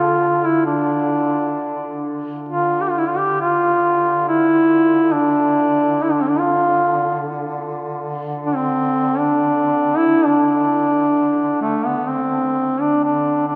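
An up-front duduk carries a longing, solemn Caucasian folk lament melody with scooped, vintage-tinged notes over a second, more distant duduk that holds a low D drone with vibrato, the pair moving in a rubato 3/4 at about 61-72 BPM in D minor and bathed in the long, wet reverb of a vast cathedral in this short passage cut from a longer piece.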